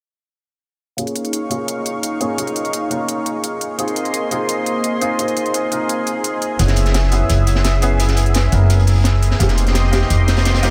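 A dark, mellow grand piano with chorus and delay and a thick, warbling detuned pad open this soulful, rolling liquid drum and bass excerpt at 171 BPM in Eb dorian, both moving through a filter sweep over sus4 ninth chords beside a crisp electronic hi-hat, until at 6.6 s a woody, thumpy upright bass arrives up front with a gritty, saturated breakbeat kit, the whole mix soaked in a huge, dreamy reverb.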